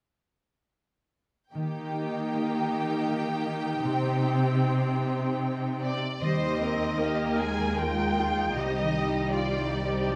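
Bathed in a moderate scoring-stage reverb, this fragment of a moving, uplifting cinematic film score unfolds in rubato 3/4 at 77 BPM in Eb major, as a focused violin section on the second line, smooth viola accompaniment, ringing fingerpicked harp arpeggios in the background and an up-front, lush cello bass begin at 1.5 seconds, joined at 5.8 seconds by a dark, expressive violin section carrying the vibrato-laden melody.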